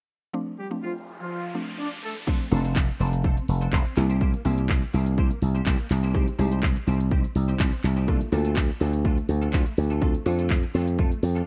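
A straight 4/4 dance-pop groove at 124 BPM in F major, upbeat and euphoric, taken from a longer piece: a woody, round, mallet-like synth pluck with chorus and sidechain pumping sits in the background from the start, joined by a warm, tight pop horn section with light vibrato, delay and pumping, and an electronic riser. At 2.3 s a punchy, tape-tinged house kit of kick, handclaps, hi-hat, shaker and crash arrives up front with a clean, compressed semi-hollow guitar riff, and a growly, bright slap bass through an envelope filter follows at 2.5 s. The chords move from F6 through C7, Abmaj7/C and Bbmaj7 back to F6 in a dry, rough home demo mix.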